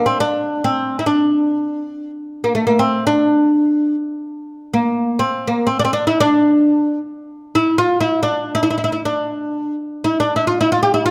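A bright, woody oud plays alone throughout this short excerpt of Arabic maqam music, its plectrum-plucked double strings and fretless tone sitting up front in close, detailed sound. Unfolding in free time in maqam bayati on D, with tuning set to A4 = 445 Hz, the melody moves between A3 and G4 with a hypnotic, soulful character. A moderate recital hall reverb of 1.4 seconds gives the acoustic instrument an airy sense of space over its 11.1 seconds.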